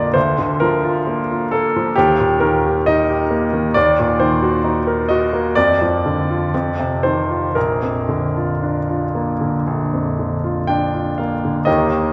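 A bright, brilliant grand piano sits up front and plays alone for the full 12.1 seconds, its polished tone carrying long sustain and an intimate touch of audible action noise. This lyrical, warm romantic character piece moves with a gentle rubato through a short phrase that settles onto a Bb chord at 7.6 seconds. A wet church reverb surrounds the instrument, giving the passage, cut from a longer work, a spacious, glowing resonance.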